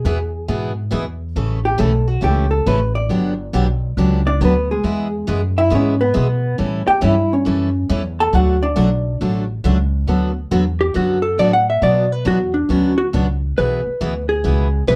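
Cheerful and down-home, this swung country and western swing passage, cut from a longer piece, rides on a woody, thumpy pizzicato upright bass and a bright, full-bodied picked steel-string acoustic guitar, both up front in a moderate club room. A clean, compressed vintage hollow-body jazz guitar carries a dark second line until 9.2 seconds. A second hollow-body guitar then enters at 10.8 seconds with the melody, touched with plate reverb, over changes that move from E through Gmaj7 and A7 toward D6 and Bm.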